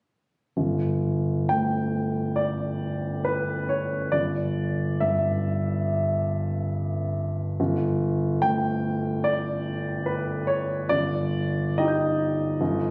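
Classical impressionist solo piano in G lydian, this excerpt drifts with a luminous, hazy mood at a rubato 62-74 BPM in 4/4. A warm grand piano plays alone from 0.6 to 12.9 seconds, ranging from G1 to G6 with a present, polished tone set up front, its harmony settling on Ebmaj7/G at 10.9 seconds. The sound carries a moderate scoring-stage reverb alongside a compressed phone-in-the-room capture with club reverb.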